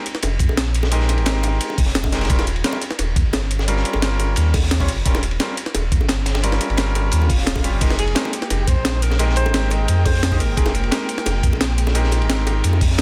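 A straight 4/4 liquid drum and bass groove at 174 BPM in F minor drives this dreamy, melancholic excerpt. It is built from a gritty, pitched-up sampler-style breakbeat kit with an up-front snare and crash, a second, darker, saturated breakbeat kit with filtered hats, ride and a high-tuned snare, a thumpy electronic kick, tight high-tuned bongos in the background, and a deep, full sub bass with octave. A brilliant grand piano with audible action noise and dub echo moves between Fm11 and Eb13, and after a very quiet electronic swell, lush, woody strings with vibrato enter at 7.8 seconds, pumping under sidechain in the background, while a breathy alto saxophone with subtone, scooped notes and tape echo takes a jazz-style solo from 8.0 to 11.8 seconds over a dense, heavily limited master.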